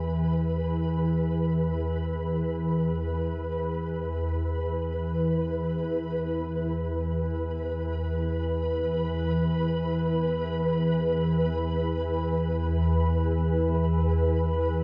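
A nasal, organ-like drone dominates this dark ambient excerpt. It sits up front and sustains in unison from E2 to E3, with slow attacks, long releases and an ensemble chorus adding body. Alongside it a grainy, flickering granular texture hovers around B4. This texture is detuned and softly chorused, and it also sits up front, though at a lower level than the drone. Both parts play throughout the 14.8 seconds in free time over an E5 chord, tuned to A4 = 437 Hz. The mood is unsettling and cavernous, and a new section begins at 6.2 seconds. A cathedral-like reverb with a 5.9-second tail soaks the dreamy mix.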